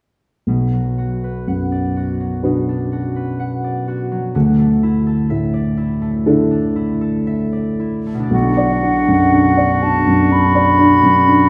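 Cinematic and bittersweet, this sorrowful excerpt cut from a longer piece moves at a rubato 62 BPM in 4/4, with a dark grand piano up front giving mellow, long-sustained accompaniment over Bm and Dsus2 while a fingerpicked concert harp rings out arpeggios, until at 8.3 seconds a pure, straight-toned concert flute takes a second line alongside a distant oboe and a very quiet clarinet, all set in a recital hall reverb.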